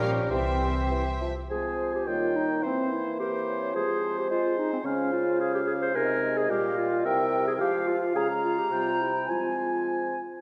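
A mellow, punchy solo clarinet shares the second lines in this stormy, urgent passage from a quick classical-period symphonic movement in F minor and 2/4, taken at 98-110 BPM with rubato. It is joined throughout by a clear oboe, airy, hollow flutes, a light-vibrato bassoon accompaniment and a tight French horn section holding sustained chords in the background. The strings sound only in the opening 1.3 seconds: an intense violin section carries the melody over a second, very quiet violin line, lush violas, expressive cellos with portamento and a focused double bass section up front. The harmony moves from C into F minor at 1.5 seconds and on through Eb, Ab and Db, with the music set in a wet scoring-stage reverb.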